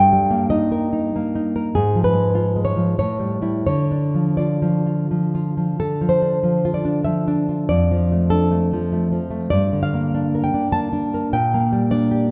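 A dark, full-bodied nylon-string guitar sits up front in a moderate concert-hall reverb, playing a wistful, passionate romantic solo in D minor and 3/4 with a rubato feel between 81 and 106 BPM, its thumb-plucked lines reaching from F2 to A5 as chords move from Eb/G through A7 to Dm by 3.7 seconds and on to Gm/Bb in this fragment cut from a longer piece.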